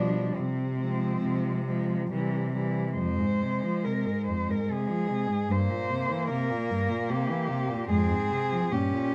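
A warm, expressive bowed cello carries the melancholic, yearning melody with vibrato and portamento over a rich, smooth second cello line, a focused cello accompaniment and an even, close cello bass, in a lyrical classical piece for cello ensemble in F minor and 3/4 at a rubato 68-76 BPM, moving from Fm/C through C and C7/G back to Fm within a dark production and moderate studio reverb, cut from a longer piece.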